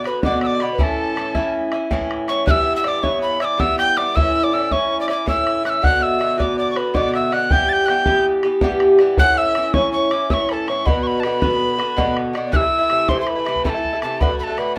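An airy, mellow tin whistle with a crisp, chiffy attack, vibrato and an unsteady quality leads this bright, lively Celtic slip jig in 9/8 at 107 BPM in B minor, joined by a dark, woody bowed fiddle on a second line and backed by up-front, metallic double-string Irish bouzouki picking and an open, boomy bodhran in a small room with moderate reverb, as the harmony moves through Bm, A and Em before turning to Am and D at 12.5 s in this cut from a longer piece.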